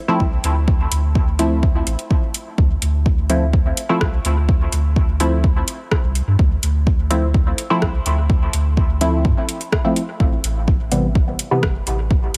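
A straight 4/4 pulse at 126 BPM drives this deep, hazy dub techno cut in D minor, with an overdriven electronic kick sitting up front beside a layered deep house kit of metallic hi-hats and rim clicks treated with reverb and dub echo. Underneath, a round, soft sub bass of triangle and square tones pumps against the kick. Muted, detuned sawtooth chord stabs with a filtered pluck and chorus, phaser and echo trace Dm7 until the move to Am7 at 10.2 seconds, in a dry mix cut from a longer piece.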